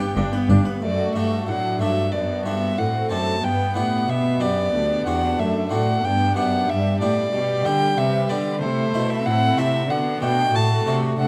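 Close, detailed and lightly reverberant, this festive, lively baroque-style concerto excerpt in G major moves at 92 BPM in a straight 4/4. A warm solo violin sings up front with expressive vibrato and portamento over a very quiet violin section also on the melody, a smooth studio violin section carrying a second line in the background, a bright, airy harpsichord and a focused chamber viola section in accompaniment, and a lush symphonic cello section on the bass, joined only briefly by a background double bass section between 0.2 and 0.6 seconds.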